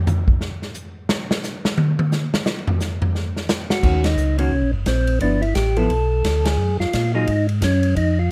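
A swinging big-band drum kit opens this soulful, smoky soul jazz organ trio excerpt alone from 0.1 s, at a brisk 175 BPM in 4/4 with a moderate swing. The kit sounds acoustic and up front, with a boomy kick, a medium-tuned snare, hi-hat, toms, ride and crash cymbals, and a hall-like air. At 3.7 s a percussive tonewheel organ enters carrying the melody in a compact middle range, its third-harmonic percussion and slow rotary speaker giving it a round, dark glow, and at 3.8 s the rest of the band arrives on an Ebm7 chord. A second, mellow tonewheel organ holds down the bass line, slightly louder, with vibrato, key click and the same slow rotary speaker, while a vintage hollow-body electric guitar adds clean, picked accompaniment that sits a little further back. The harmony moves through G13 to Gbmaj9, the band hits accents at 4.0 and 6.4 s, and the close, detailed recording carries a light reverb.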